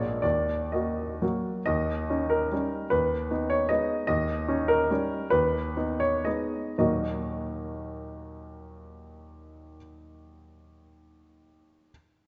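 A wet concert hall bloom surrounds this short recording, with a soft top end that rolls off above 7.8 kHz. A solo grand piano sits up front with a clear, intimate and natural tone, its short sustain and audible action noise bringing the listener close to the instrument. The music is a romantic classical dance in 3/4 and Eb minor, built on dotted rhythms and shaped with rubato, its tempo moving between 106 and 160 BPM. The harmony rocks between Eb7 and Abm over an Eb bass before settling back on Ebm at 6.8 seconds, after a slowing that begins at 3.5 seconds. Spanning Bb1 to Eb5, the playing carries a nostalgic, wistful mood throughout the 11.9 seconds, cut from a longer piece.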